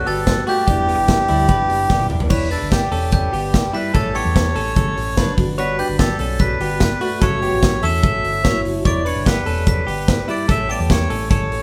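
A band playing live in one room, wrapped in a wet studio reverb, delivers this bittersweet, wistful slice of jangly indie pop in E dorian at 147 BPM, moving through Gmaj7, Em7, A7 and F#m7. A reedy, breathy melodica carries the tune over a ringing, bell-like glockenspiel second line struck with hard plastic mallets, while a shimmering, octave-doubled twelve-string acoustic guitar sits in the background and a twangy, compressed clean electric guitar picks out arpeggios; mellow electric-piano-like synth keys with chorus and tremolo sound only until 2.3 s. Underneath, a dark, round hollow-body bass and a punchy, up-front rock drum kit with bright cymbals carry the groove, the drums playing a fill from 1.9 s into the next section.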